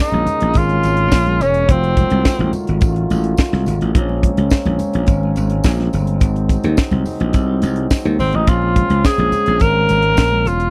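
A dry, close studio sound in the 1970s manner frames this sultry, danceable disco fragment in straight 4/4, cut from a longer piece. An up-front, tight funk drum kit with a high-tuned snare and a growly, punchy slap bass drive the groove, while very quiet high-tuned congas add texture, a jingly tambourine sits in the background, and a distant, roomy French horn section holds sustained chords with light vibrato. A breathy, whispered tenor saxophone with scooped notes carries the melody from the start until 2.5 seconds and again from 8.2 seconds, over chords moving from Bbm7 through F7b9 and Ab7 to Bbm9.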